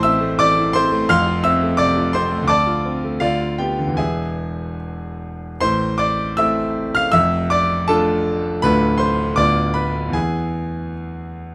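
A rubato pulse in 2/4, drifting between 74 and 87 BPM, carries this brief, brooding fragment of a romantic character piece for solo piano in A minor, tuned slightly low to A4 = 438 Hz. A clear concert grand, up front and close-miked with light reverb, spans D1 to F6, its deep bass and smooth, vintage tone giving the passionate harmony a dark weight. Two phrases each move from A minor through D minor shadings and a diminished chord to an E chord, the second starting at 5.6 seconds before the cut from the longer piece at 11.5 seconds.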